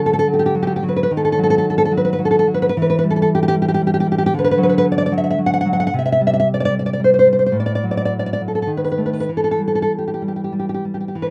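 In 3/4 with a free, rubato feel around 95-115 BPM, this short romantic piece for solo classical guitar drifts through E minor in a wistful, intimate mood. A single nylon-string guitar carries everything from the start to 11.3 seconds, its dark, thumb-plucked tone sitting up front and spanning from A2 up to F#5. The harmony moves from D through a diminished passing chord to E minor at 2.7 seconds, then wanders past D6, a bare C5 and D over A before a B7 leans back home to E minor at 9.3 seconds. Tuned slightly below standard pitch, the instrument is framed by light reverb in a rough home demo mix that keeps the playing close and personal. The clip is taken from a longer work.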